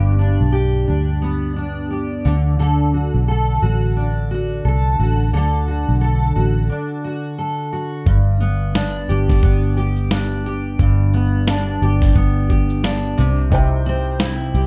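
A relaxed 88 BPM groove in 4/4 with a light swing on the sixteenths sets a carefree, easy-going acoustic pop mood in G major, heard here as a short section cut from a longer piece. A double-tracked, fingerpicked steel-string dreadnought guitar sits up front with a dark, full-bodied tone and plate reverb, joined from the start by a vintage, foam-muted fingered electric bass that is round, punchy and amped. The harmony moves from G to D, and after a brief break from 6.7 to 8.1 seconds, a dusty, sampler-style drum kit enters with a thumpy kick, medium-tuned snare and shaker, compressed and gritty, re-recorded in a large room. The chords return to G and shift to C near the close, where a woody upright piano with long sustain and plate reverb appears softly at 13.5 seconds. The overall production is dark and warm, with light reverb and a rounded top end.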